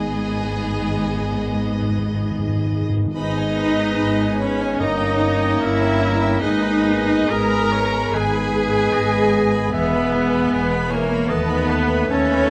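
A rubato 4/4 pulse carries this elegiac, yearning classical excerpt, where rich, vibrato-laden violin sections bowing the melody and a second line sit over an up-front viola section, ringing thumb-plucked harp arpeggios, a lush double bass section and a soft-attack cello section with portamento, while round soft-mallet timpani open with a fill and drop out at 6.0 s, a bright clarinet, an airy flute ensemble, a mellow bassoon and a dark, tight French horn section holding sustained chords join at 3.2 s, and a clear, distant oboe enters at 4.8 s, all within a moderate scoring-stage reverb.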